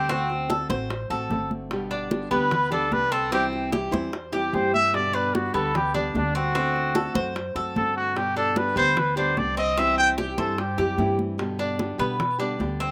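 The recording is dry and open-air, with little reverb around the players. This is a warm, relaxed Cuban son in the guajira style, moving at 149 BPM in a straight 4/4 in G major, and it is cut from a longer piece. A punchy trumpet with vibrato takes the solo up front, sounding distant and roomy with a slapback echo; it plays until 11.0 s, while the band carries on to 12.9 s. The tres picks arpeggios on metallic double strings, some doubled at the octave, as a fingerpicked classical nylon-string guitar fills in beneath and a woody, thumpy pizzicato upright bass anchors the low end. In the background, soft hands play damped, high-tuned congas with thick skins and round, low-tuned bongos that carry their own slapback echo. The harmony cycles twice through D7, G, C and G.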